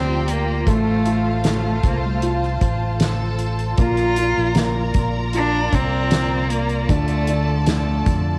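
A tender, emotional pop ballad fragment opens with a rich, bowed solo cello singing the melody up front with vibrato and portamento, over a felt-muted upright piano with audible action noise, a lush sul tasto string section holding sustained chords, a distant, clear violin section tracing a second line through tape echo, and a round, punchy fingered electric bass, while a soft-mallet drum kit with a fat snare and boomy kick enters at 0.3 seconds, with the strings and piano colored by cassette tape in a small-room home recording.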